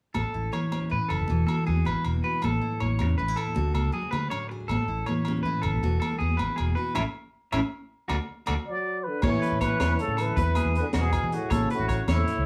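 Rolling in 12/8 at 106 BPM with a straight feel, this danceable highlife guitar band piece in A major cycles through A, Eadd9 and D. A full-bodied steel-string acoustic guitar is picked alongside a twangy, slightly broken-up electric guitar spinning arpeggios. A punchy fingered electric bass anchors the low end, and ringing agogo bells mark time beside bright, high-tuned congas set back in the distance. The band hits an accent together from 7.0 to 9.2 seconds. At 8.7 seconds a breathy, plunger-muted trumpet takes the melody with a whispered wah-wah tone, joined by a raspy, growling trombone on a second line with scooped notes. A crunchy breakbeat drum kit enters at 9.2 seconds, saturated and gritty, with a high-tuned snare, dark cymbals and a rolled-off top, while moderate reverb gives the group the warm sound of a band playing live in one room.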